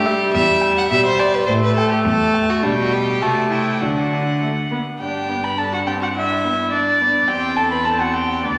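A wet concert-hall reverb surrounds this cheerful, lively excerpt from a quick classical-period movement for string quartet, where all four bowed players use period-style gut strings with a reedy edge. A dark, nasal first violin carries the melody from 0.1 s, backed by a close, rich second violin, a distant viola with light vibrato and a cello on the bass line. The harmony settles onto a new phrase at 5.0 s, and the players continue together until 8.6 s.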